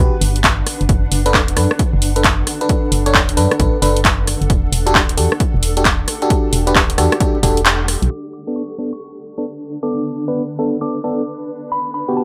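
UK garage in a skippy, swung two-step groove at 133 BPM in B minor, this late-night cut sets glassy, chorused FM electric piano stabs over a hollow, organ-like FM bass, a punchy analog drum machine of handclaps, muffled hi-hat and rim click, and an electronic kick, with a blurred granular cloud pad pumping underneath; the kick drops out at 7.7 s, and from 8.1 s the bass and drums stop while a soft, phased synth bell melody floats over the pad and piano, all wrapped in a dry, gritty hardware sound with vinyl crackle.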